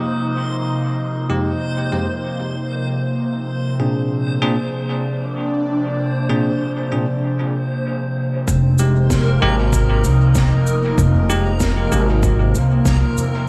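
A lightly swung groove arrives only at 8.5 s in this meditative, spacious ambient dub fragment, where a breathy pad with chorus and phaser holds sustained chords from the start beneath a dreamy reversed granular texture, a bell-like tine electric piano adds dub-echoed stabs from 1.3 s, and then a woody pizzicato upright bass, a deep overdriven electronic kick and a distant soft-mallet kit of cabasa, snare and toms join in a small, lightly reverberant room.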